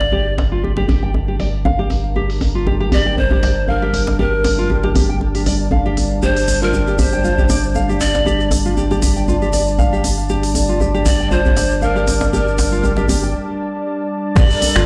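A spiritual afro house excerpt opens on a breathy, chiffy bamboo pan flute melody with delay, floating over a detuned, warbling analog pad that pumps under sidechain and moves through a filter sweep, alongside a round sine sub bass and a close, dry djembe in the background. A fingerpicked nylon-string guitar plays low-pass filtered arpeggios with delay, while a smooth, tape-toned afro-pop kit adds finger snaps, hi-hat and crash cymbal in studio reverb, and a grainy tube shaker enters at 6.2 seconds. After a break from 13.3 seconds, a deep, layered electronic kick lands up front at 14.4 seconds, the mix heard through a big sound system in a bare room.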